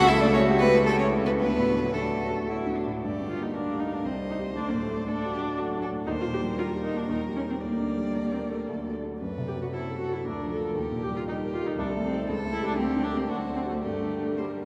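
Graceful and cheerful, this quick classical-period movement for piano quintet moves in a lilting 3/4 with a supple, rubato feel, in a brief passage cut from a longer piece. A rich, focused violin carries the melody with vibrato, sounding distant, while a second violin sits in the background, its line colored by portamento and expressive bowing. A viola with a full, vibrato-laden tone fills in the accompaniment, and a very quiet cello adds a clear, focused second line beneath. Up front, a concert grand piano with deep bass and an open character underpins the strings, sounding the most present of the ensemble. The whole group plays in a vast, echoing space, its long cathedral reverb lending the harmonies, settling into the minor from 3.0 s, a distant, haloed glow.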